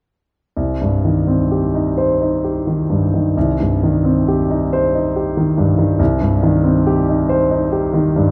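A concert grand piano, up front with deep bass, an open tone and short sustain, plays solo from 0.6 to 8.3 seconds in this melancholic, mournful fragment of a romantic classical nocturne in C minor, unfolding in a slow rubato 6/8 at 42-48 BPM (dotted quarters) across a range from C2 to C5 within a moderate recital hall reverb and a dark production.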